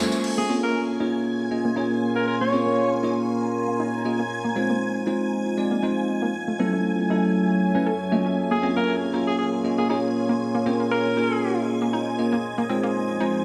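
A smooth, late-night house excerpt in Bb minor at 118 BPM, with a light 16th-note swing and a moody chord cycle moving through Bbm7, Fm7 and Gbm7. A deep, dark ambient pad holds sustained chords under the whole 13.4 seconds, its detuned sawtooth body softened by chorus, built-in reverb and a vintage 12-bit sampler grit. Up front, a bell-like tine electric piano plays clean, bright stabs through a digital delay. A shimmering string machine of violins adds a high texture with ensemble chorus. In the background, a round analog pluck runs arpeggios from 0.4 seconds, carrying a filter sweep along with its own chorus and delay. A bright, forceful alto saxophone takes a jazz-style solo melody with vibrato and scooped notes, entering at 0.4 seconds and returning at 8.5 seconds, all set in a moderate, lush hall reverb.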